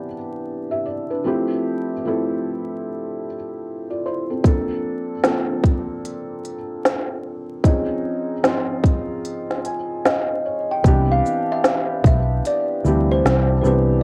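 A swung 75 BPM lo-fi hip hop groove in C major, with a tight kick, woody snare, crisp hats and shaker, enters at 4.4 seconds, its electronic kit carrying 12-bit sampler grit and tape coloring, after a felt-muted upright piano has opened alone with mellow, intimate maj9 chords, audible action noise, plate reverb and a tape-softened haze. During a brief break filled by the piano, a ringing, thumbnail-plucked kalimba melody with tape echo arrives at 10.1 seconds, and a dark, round, foam-muted electric bass joins up front at 10.8 seconds as the harmony returns to Cmaj9. Vinyl crackle and a cassette home-recording sheen give this fragment of a longer piece a nostalgic, dreamy mood.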